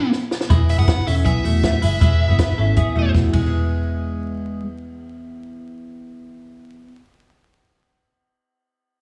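This short clip of jangly indie pop, youthful and bright, is cut from a longer piece and opens with a band accent as a fuzz lead guitar and a compact cocktail drum kit strike together, the drums adding a quick fill in the first half second. The lead guitar is distorted and picked, carried by plate reverb and tape echo as it sings a brief melody until about 3.1 seconds. At 0.5 seconds the music settles on an E chord, where a vintage muted fingered electric bass joins up front with a round, punchy, foam-muted tone, beside a twangy, compressed twelve-string electric guitar spinning clean arpeggios through its own tape echo. A picked steel-string acoustic guitar plays full-bodied accompaniment underneath, with a touch of finger squeak, and it is the last part sounding, carrying on to 7.0 seconds. The drums stay dry and natural, with dark cymbals, a high-tuned snare and a tight kick, and they close with a second fill at 3.1 seconds before dropping out. 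The whole mix sits in a moderate large studio room with vinyl crackle and studio ambience.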